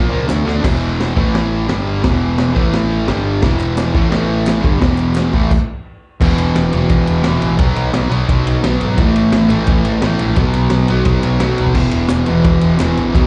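An up-front, double-tracked fuzz guitar riff drives this raw, rowdy garage rock at 173 BPM in 4/4, backed by overdriven picked fuzz bass and a vintage drum kit with dark cymbals, a high-tuned snare, a punchy kick and gritty sampler texture that opens with a fill, while crisp group handclaps sit in the background, and after a stop at 5.5 s the band moves into a new section at 6.2 s, all heard as a live gig through a club PA with moderate reverb and the highest frequencies cut away.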